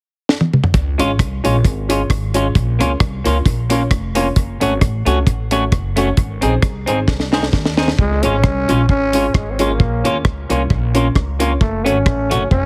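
Joyful and bouncy, this short ska clip moves at 132 BPM in Db major with a light swing, heard through a small room and a heavily compressed, radio-like sound. A dark, dry reggae drum kit opens with a fill at 0.3 seconds, its high-tuned snare, tight kick, rim clicks, hi-hat and toms sitting up front and trailing a dub echo. A woody, thumpy pizzicato upright bass on gut strings joins almost at once, with a little tube saturation. A clean, fingered semi-hollow electric guitar and a worn, slightly detuned upright piano with boxy, short-sustained stabs and dub echo fill out the chords as they move from Db through Bbm and Gbm to Ab. After another drum fill, a raspy, growling trombone takes the solo melody at 8.0 seconds, punchy and up front, with scooped notes and its own dub echo.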